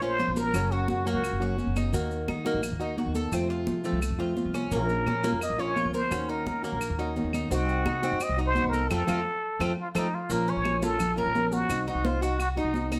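This danceable fragment of Cuban son and guajira moves at a brisk 172 BPM in 4/4 with a straight feel, set in Bb harmonic minor. Up front, a jazz-style trumpet with a plunger mute carries the melody with a raspy, growling wah-wah tone, light vibrato, soft attacks and scooped notes, all lit by a plate reverb. It sounds a brief phrase at the start, then returns at 4.7 seconds to play until the end. Beneath it, a fingerpicked nylon-string guitar gives full-bodied accompaniment with audible finger squeak, while a picked Cuban tres adds metallic, double-strung arpeggios. A pizzicato upright bass sits up front with a woody, thumpy growl. High-tuned, bright congas and grainy maracas keep the groove, the dry claves join at 0.5 seconds, and a drum fill with a band accent at 8.9 seconds leads into a new section over chords moving from Bbm through Ebm7, Cdim and F.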